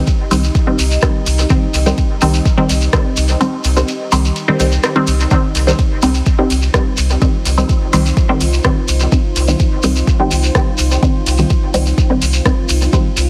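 Heavily compressed into a radio-like, multiband squeeze with a light digital ambience, this hazy, cavernous dub techno excerpt in C minor runs at 126 BPM in straight 4/4, resting on a single Cm chord. An up-front, round sine sub bass, a muted, detuned, wave-folded chord stab with phaser and dub echo, and a dark, moody pad with chorus, slow attack and a moving notch all pump with sidechain compression, joined by a deep, layered electronic kick, which drops out from 3.4 to 5.3 seconds. A deep house kit of smooth hi-hats, ride cymbal and rim click trails dub echo, while a grainy, close acoustic shekere adds texture.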